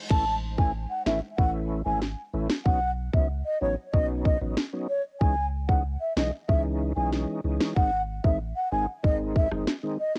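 Sultry and tough, this 94 BPM dancehall excerpt sets an airy, wooden baroque flute up front with tape echo over a lightly overdriven tonewheel organ turning through a slow rotary speaker, a deep, sine-like sub bass with a pitch-drop attack, and a gritty, electronic island pop drum kit of tight kick, sharp snare, rim click and crash with muted hi-hats, all moving through A, Badd9, C#madd9 and G# in a lightly reverberant home cassette recording.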